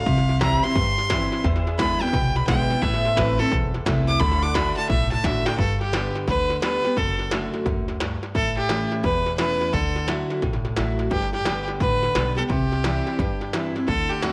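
Honky-tonk and classic country at a swung 174 BPM in G major, this heartfelt, easygoing excerpt puts a clear, focused bowed fiddle up front, soloing until 5.6 s over a bright, full-bodied picked dreadnought acoustic guitar and a woody, thumpy pizzicato upright bass, while a very quiet, twangy pedal steel adds clean sustained chords until 5.6 s and an electronic industrial drum kit with a heavy kick, clanging snare and crisp hats rolls a fill into the next section, all set in a small room with moderate echo-chamber reverb.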